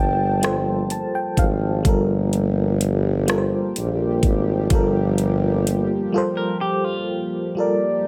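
A slow six-eight R&B groove at 42 BPM in G minor rests on an electronic drum kit of knocking kick, metallic hats and rim click sitting up front from 0.4 s. Beneath it a close-miked jazz tuba bass with vibrato joins a dark FM electric piano with tremolo, which plays a fill over an opening Gm9 chord. A smooth sawtooth analog pad with slow attack and chorus sustains chords under a gliding, detuned portamento lead with slapback echo that sings briefly at the start and returns at 7.6 s, while in the break a clean, fingered semi-hollow guitar with phaser takes a short second line at 6.4 s, giving this yearning, late-night piece a lightly reverberant glow.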